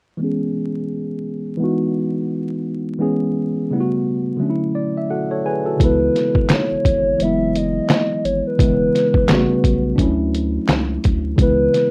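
Swung sixteenths at 86 BPM in 4/4 set a hazy, melancholic lo-fi hip hop groove in C# phrygian, which opens with a worn, slightly out-of-tune tine electric piano playing alone, barky and lightly overdriven through a combo amp, its chords moving under a filter sweep and closing with a fill. At 5.8 seconds a muffled, pitched-down, sampler-style trip hop kit arrives up front with a thumpy kick, medium-tuned snare, handclaps and hi-hat, joined by a deep, thick saturated sub bass and a hollow, woody clarinet-like synth lead with chorus and vibrato. The rough home-demo mix carries light reverb and vinyl crackle, and this cut from a longer piece ends at 11.9 seconds.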